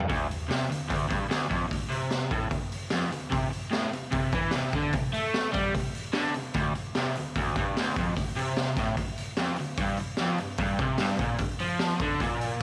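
A crunchy, overdriven electric guitar riff and a raw garage drum kit kick off together from the first moment, setting a swaggering, rowdy garage rock mood in a straight 4/4 groove. The picked guitar is double-tracked and sits up front, its low riff ranging from D2 to A3 with a warm edge. The drums sound acoustic and up front, captured in a small room with a mid-forward, saturated, gritty character and a rolled-off top. A high-tuned snare cracks over a boomy kick, with hi-hat and toms filling out the kit. Light reverb and studio ambience frame the pair, and this short cut from a longer piece stays on a single section, with the drums stopping at 12.5 seconds and the guitar at 12.6 seconds.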